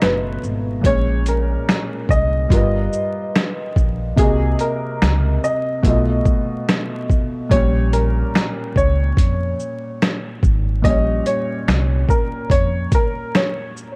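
Reflective and melancholic, this lo-fi hip hop fragment in Bb dorian sways at 72 BPM with a swung 16th feel, as a worn, slightly detuned upright piano sings the melody through tape echo over a soft, felt-muted second piano's intimate chords, a dark, woody pizzicato upright bass sitting up front, and a gritty, pitched-down boom bap kit of thumpy kick, medium-tuned snare, hi-hat, shaker and finger snaps, all set in light small-room reverb with a bed of vinyl crackle.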